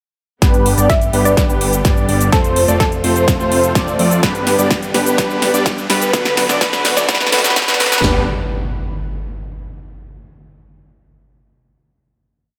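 Huge, detuned supersaw chords drive this triumphant, anthemic festival progressive house piece in G major at 126 BPM, their dotted-rhythm riff pumping with sidechain, coloured by cassette tape and tape echo, and shaped by a filter sweep across the build. A thick, wave-folded unison lead with vibrato doubles that riff in arpeggios through lush chorus, while a fat analog bass, sidechained as well, follows the chord rhythm through G, F, G and D. Layered big-room dance drums sit up front with a punchy four-on-the-floor kick, a backbeat snare, toms, metallic hats and shaker, all in a small room, with a fill running through the whole build. A hollow, bouncy square pluck adds short answering phrases between 0.9 and 3.2 seconds, and a very quiet, biting string section holds a distant sustained pad beneath. A faint riser and impact enter at 2.9 seconds, carrying the build into a final G chord at 8.0 seconds, all set in a moderate, lush hall reverb.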